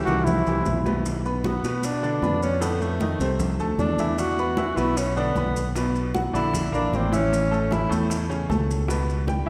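A wet concert-hall reverb surrounds this fiery, sophisticated slice of Afro-Cuban jazz, cut from a longer piece and moving at 153 BPM in a straight 4/4 in B minor. A dark, close-miked trumpet opens with a brief phrase, with light vibrato and scooped notes, that lasts only until 0.8 s while a drum fill sets up the groove. From 1.0 s the breathy tenor saxophone takes a solo, whispered and intimate with a soft attack, light vibrato and scooped notes, and it plays until 7.9 s. Underneath, a bright, brilliant upright piano with a woody, short-sustained tone sits up front in the accompaniment, and a fingered electric bass, direct and amped, anchors the low end. Percussion rounds out the band: very quiet, ringing, high-tuned congas struck with hard hands, very quiet, round, low-tuned bongos played with soft hands at a distance, and grainy, vintage maracas. The harmony travels from Bm through F6, Esus2, A# and A before settling on C#7(b5).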